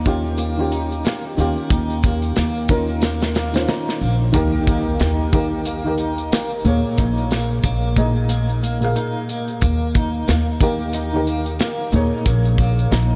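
A dark, woody pizzicato upright bass with tube saturation sits up front in this brooding, cinematic trip hop excerpt at 91 BPM with a swung 16th feel, shifting between Eb and Bbm7 harmonies. A soft, felt-muted upright piano with audible action noise, harmonic tremolo and tape echo plays intimate accompaniment over a punchy, rolled-off studio drum kit. A slightly broken-up electric guitar traces tremolo-laced arpeggios through diffuse delay, while a background egg shaker and triangle drop out at 4.3 seconds as an electronic impact sounds until 7.0 seconds, all bathed in a dreamy, reverb-soaked mix.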